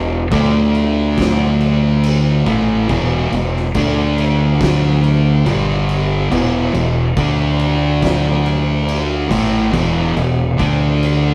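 A slow, straight 4/4 pulse at 70 BPM drives this sludgy, heavy stoner and doom metal fragment, cut from a longer piece, where a thick, double-tracked fuzz guitar riff sits up front over power chords moving among D5, E5 and G5, a growling, overdriven fingered electric bass rumbles low beneath it, and an oversized low-tuned drum kit with a punchy kick, fat snare and dark crash cymbal joins at 0.3 seconds, all caught in a rough rehearsal-room recording with light reverb.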